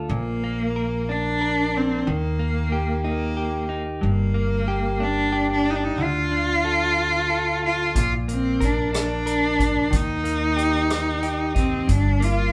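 Recorded live in one room with moderate studio reverb, this romantic, heartfelt six-eight pop ballad in Bb major moves at 61 BPM as a rich, bowed cello carries the melody up front with focused vibrato and a smooth top, a bright, clean, direct-recorded electric guitar with spring reverb picks out the accompaniment, a woody, growly pizzicato upright bass holds the low end, and a soft-mallet drum kit with a punchy kick, hi-hat and rim click enters at 8.0 s in this excerpt from a longer piece.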